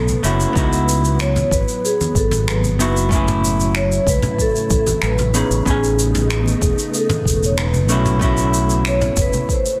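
A light, small-room reverb and a dense, heavily limited modern master give this short excerpt of sunset chillout a close, polished sheen, its mood warm and smooth at 94 BPM in a straight 4/4. A vibraphone played with soft mallets carries the melody from the opening, its metallic, ringing tone colored by a slow motor vibrato and a delay, while a dark, clean vintage hollow-body jazz guitar picks out accompaniment through its own delay. Underneath, a soft string machine holds silky, warbling chords with a slow attack, long release and ensemble chorus, sitting mellow in the background. A fretless electric bass anchors the low end with a direct, amped tone. The rhythm section starts at 0.1 seconds, pairing an airy brush drum kit with finger snaps, shaker and toms alongside very quiet, low-tuned congas played with soft hands, and a deep, tape-toned electronic kick joins at 0.6 seconds. The harmony moves from B9sus4 through C#m11, F#m7 and Amaj9#11 before returning to B9sus4 at 7.9 seconds.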